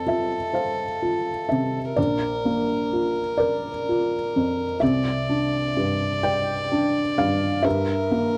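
A slow, swaying 6/8 lilt moves with a free, rubato pulse through this brief neoclassical passage for piano and strings, cut from a longer piece. A felt-muted upright piano carries the accompaniment from deep bass into its upper register, its mellow, short-sustained tone sitting close to the ear, with the noise of its action audible beneath the notes. Above it, a single bowed violin sings the melody in a narrow range, played sul tasto with a soft attack and a pure, floating sound that sits a little lower in level than the piano. The harmony moves from F to Bb at 2.0 seconds, then to Cadd9 at 4.8 seconds and Gm at 7.7 seconds. The dry, close sound of a 1970s-style studio keeps both instruments up front, lending the music a tender, intimate mood.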